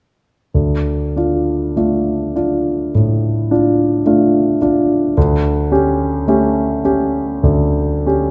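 Classical romantic nocturne in D minor for solo piano, wistful and yearning at a slow 47-56 BPM in 4/4 with rubato, a brief excerpt in which a warm concert grand sits up front with deep bass and short sustain, moving from Dm to A7/D at 5.2 seconds inside a wet recital hall reverb before it ends at 8.3 seconds.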